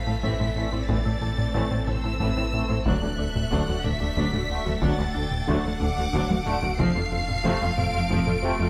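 Tense and brooding, this short cut from a hybrid orchestral and electronic film score moves slowly at 61 BPM in 6/8 through A minor, D and F. A clear, focused violin section carries the high melody over a lush second violin line, distant expressive violas, and very quiet rich cellos and woody double basses, while mellow horns and roomy trombones hold sustained chords from 0.6 seconds. Beneath, a deep sine sub bass, a rubbery, nasal square-wave riff, a tight sequenced synth arpeggio with chorus, phaser and delay, and an evolving, detuned wavetable pad sit against hard-stick taiko drums in a small room, with a drum fill at 6.3 seconds, all captured in close, detailed sound with light reverb.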